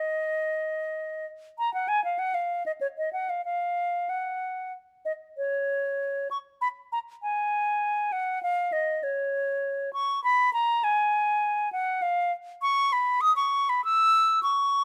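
A lone concert flute opens this radiant, flowing fragment of a baroque-style fantasia in F# major, played with rubato at around 99 BPM in 3/4. The pure, straight-toned, tongued flute sits up front, ranging from C#5 to E6 and moving into a new section at 5.4 seconds. Close, detailed microphones and light reverb frame the solo line through to its cut at 14.8 seconds.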